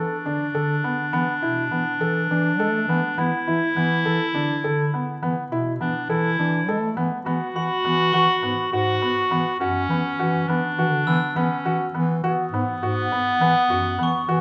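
A bright clarinet with a vintage, classical tone sits up front, carrying a second line in its low register in this playful, shimmering piece of contemporary chamber music in 7/8. Beneath it, a dark bass clarinet with a soft attack and smooth top holds down the bass, also played in a classical style and placed close to the listener. A felt-muted upright piano adds soft, mellow arpeggios with an intimate, up-front presence. At 7.6 seconds a glockenspiel struck with brass mallets enters in the background, bringing a metallic, bell-like ring with a band-limited, old-fashioned character. The harmony moves from E7sus4 to B5 at 7.3 seconds, and the whole piece sits in a moderate concert-hall reverb, as a short section drawn from a longer work.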